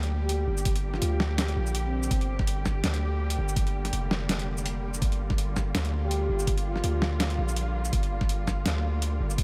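This excerpt opens on a single G minor chord held by a muted chamber string section, dark and veiled with gentle vibrato, underpinned by a deep, mellow 808-style bass carrying tube saturation and a gritty, pitched-down boom bap sampler kit of hi-hat, shaker and snare dressed in studio reverb. It is half-time drum and bass at 165 BPM in 4/4, cinematic and tense, with a 56% swing on the sixteenths giving the groove a loose lean. A breathy, flute-like synth lead enters at 0.2 seconds, its soft attack dressed in lush chorus and dub echo, and returns briefly around 6.0 seconds. From 0.7 seconds a layered, knocking electronic kick joins, tape-tinged, re-recorded in a small room and sitting in studio reverb. The strings carry sidechain pumping, and the overall sound stays close and dry apart from the effects on individual parts.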